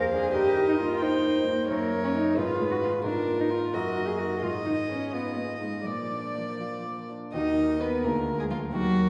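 Heard from further back in a reverberant recital hall with a long decay, this short passage cut from a longer piece is a quick classical-period movement for piano quartet in Eb minor, yet its mood comes across as cheerful and lively. It moves in 6/8 at 87 beats per minute counted in dotted quarters, with a rubato feel that lets the pulse breathe. A rich, pure violin carries the melody, bowed sul tasto with a soft, floating attack, while the dark cello, the most prominent voice, sings an intimate second line with vibrato close beneath it. A shadowy, smooth-topped viola and a bright, brilliant concert grand with deep bass and long sustain fill out the accompaniment, all four parts sounding from start to finish. The harmony leans on inversions and diminished colours before reaching Bb at 5.9 seconds, and a new section begins at 7.3 seconds on Ebm before turning toward Bb7 over D.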